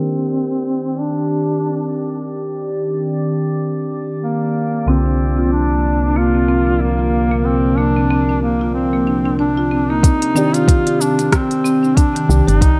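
A close-miked, punchy duduk with vibrato carries the melody in this earthy, meditative organic downtempo excerpt, over intimate felt-like synth keys and a smooth, detuned analog pad that both pump with the sidechain, joined by a glassy texture of drifting overtones from 0.8 seconds and a mellow soft-mallet marimba with 12-bit sampler grit from 4.9 seconds; after a filter sweep, an afro-pop kit of smooth hi-hat, rim click and shaker arrives with a soft electronic kick at 10.0 seconds, and a woody, round FM bass slips in just before the close, the whole set in a moderate concert hall reverb.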